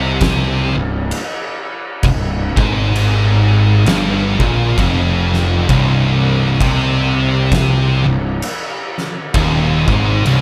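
A brooding, heavy stoner and doom metal excerpt opens on a C minor riff from a scooped, high-gain guitar, bright and double-tracked with distortion, together with two thick fuzz guitars whose dark, picked tone sits very quiet beneath it. A fuzz-driven electric bass plays from the start too, growly and overdriven, anchoring the low end with a direct, amped sound. At 0.2 seconds an oversized, low-tuned acoustic drum kit arrives, placed up front with a boomy kick, a fat snare and dark crash cymbals, its big, pumping room sound saturated and gritty. The pace is a slow 66 BPM in 4/4 with a loose swing on the eighth notes, and the harmony rests on a single C minor chord throughout the 10.4 seconds. A small room ambience surrounds the band, adding to the crushing, weighty atmosphere.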